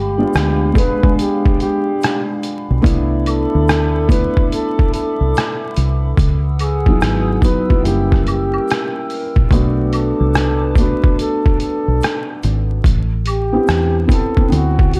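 A swung, unhurried 72 BPM lo-fi hip hop groove in G major, cut from a longer piece, rides on a gritty, pitched-down sampler-style drum kit with a thumpy kick, hi-hat and rim click, joined by a round, punchy dub bass up front and background egg shaker, woodblock and group handclap. Over felt-muted upright piano with a cassette-tape softness and a warbling, nostalgic pad that ends at 12.8 seconds, a breathy flugelhorn sings a whispered, jazz-style solo with vibrato and scooped notes, trailed by tape echo. Chords drift from G7b9 through Cmaj13 and C#m11 to Am7, and the dark production, small-room ambience and vinyl crackle give the whole a cosy, dreamy intimacy.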